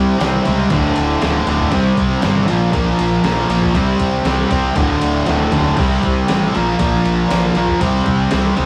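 A straight 4/4 hard rock groove at 118 BPM drives this heavy, menacing excerpt cut from a longer piece, with three guitars stacking a power-chord riff over C5, D5 and Bb5: an overdriven semi-hollow guitar up front, with a bright, double-tracked high-gain guitar and a tight distorted guitar behind it. A fuzz-soaked fingered electric bass growls and punches underneath, while a trip hop sampler-style drum kit, pitched down, gritty and re-recorded in a large room, enters at 0.2 seconds with a thumpy kick and drops a fill at 5.3 seconds. The whole take has the rough feel of a rehearsal room, with saturated tone and a short, wet studio reverb.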